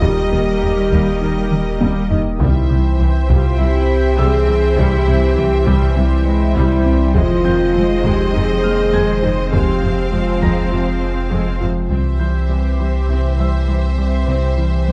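A dark, warm production with moderate scoring-stage reverb frames this brooding, tense passage from a longer hybrid orchestral and electronic film score. Up front, a deep, round sine sub bass anchors the low end beside lush bowed cellos and a very quiet double bass section, while a taiko ensemble with heavy sticks thuds in the background and plays a drum fill at 1.5 seconds. A shimmering, detuned pulse-width pad and a mellow, distant French horn section hold sustained chords, and background violas add smooth, even accompaniment beneath a clear, intense violin melody with vibrato. A gentle, tine-like synth pluck, treated with chorus and delay, spins arpeggios, and a bright grand piano with short sustain adds delayed high texture. At 11.9 seconds a rich second violin section enters with its own line as the harmony settles on C.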